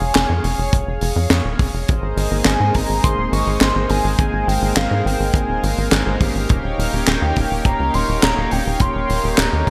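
A bright 1980s-style digital production with a moderate plate reverb frames this short cinematic, nocturnal synthwave excerpt at 104 BPM in 4/4, moving from Db to Eb7. A velvety, sawtooth synth lead with chorus, vibrato and digital delay carries the melody over a shimmering pulse-width pad and a punchy, nasal sequencer bass, both pumping with sidechain. A tight, up-front acoustic kit with handclaps, hi-hat and a high-tuned snare in gated reverb enters at 0.2 seconds, the kick joins at 0.7 seconds, and fat, warbling analog synth brass stabs arrive at 2.3 seconds.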